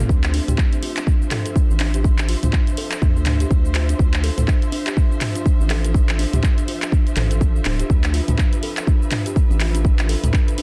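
Afro house at 123 BPM in D dorian with a swung sixteenth-note feel, this earthy, spiritual excerpt sits on a Dm9 chord as a punchy, up-front electronic kick and a layered house drum kit of handclaps, hi-hat, shaker and toms drive beneath a deep, round analog bass, while woody kalimba arpeggios carry dub echo over lush, bowed sustained chords from a clear studio string section, the bass, kalimba and strings all pumping with sidechain in a dry, dense and heavily limited modern mix.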